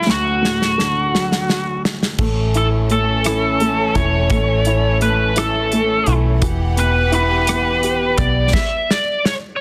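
A dramatic, melancholic six-eight pop ballad, cut from a longer piece, opens on a D chord with a biting, overdriven lead guitar carrying the melody over smooth, short-sustained grand piano and a natural country drum kit whose punchy kick and fill drive the first 2.2 seconds. At 2.2 seconds, as the harmony shifts to A, a dark, foam-muted fingered electric bass enters alongside a lush, bowed string section with vibrato holding sustained chords, and the harmony later moves to Emadd9 at 6.4 seconds. The strings and bass drop out at 8.5 seconds and the piano at 8.6, leaving the guitar and a closing drum fill in light reverb and small-room ambience under a dense, heavily limited modern master.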